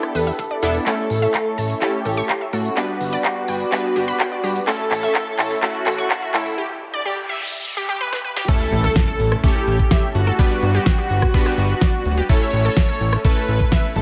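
Progressive house at 126 BPM in A mixolydian, hopeful and uplifting, where a thick, detuned unison lead carries the melody over an airy, dreamy second lead, a smooth background pad that drops out at 6.6 s alongside a jingly tambourine, punchy supersaw stabs, a lush, filter-swept pluck arpeggio, a fat, saturated analog bass, a knocking up-front kick and a pop kit with a fat snare, crisp hats, handclaps and crash, all building under filter sweeps and drum fills into a brief break with a faint noise sweep before the drop lands at 8.5 s with a quiet impact.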